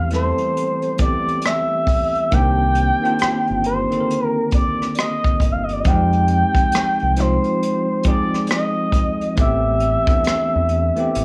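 A smooth, sawtooth-edged synth lead sings an expressive, vibrato-tinged melody with chorus and slapback echo, over a bright, bell-like tine electric piano and a deep, round dub bass played with fingers, in this sultry, late-night neo-soul R&B fragment at 68 BPM with a swung sixteenth feel. A moment later, at 0.1 seconds, a vintage brush kit joins with a punchy kick, hi-hat and rim click, sounding mid-forward with a rolled-off top. The chords drift from Am9 through Cm9 and Fm9 back to Am9 in a small room with moderate reverb.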